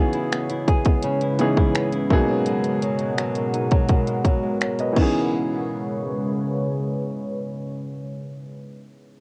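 A grand piano with audible action noise and small, fingerpicked nylon-string guitar arpeggios open this sensual, late-night contemporary R&B excerpt through a filter sweep and cassette-tape haze, joined by a deep, dark, detuned sawtooth pad with chorus and an up-front, overdriven trap kit of hard-clipped kick, warm hi-hat, finger snaps and crash cymbal that drops out at 5.1 seconds.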